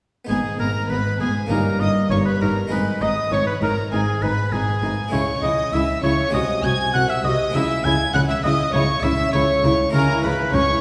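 The recording sits in a wet recital hall, heard from further back in the room, its reverb lending the ensemble a spacious halo. This brief cut from a longer piece is a dramatic, driving baroque-style concerto movement in G# minor at 100 BPM in straight 4/4, moving through G#m, D#7/G, C#m and G#7/B#. A close-miked, clear oboe carries the melody from 0.3 seconds with light vibrato, joined higher by a rich violin section with gut-string tone and a smooth top. A warm second violin section supplies a background line, while a nasal, dark viola section fills the middle and a dark cello section and a reedy double bass section anchor the bass until 10.6 seconds. Beneath them, a dry, round Flemish-style harpsichord with one set of strings plucks the accompaniment from 0.2 seconds, its close-miked sound standing apart from the bowed period-style strings.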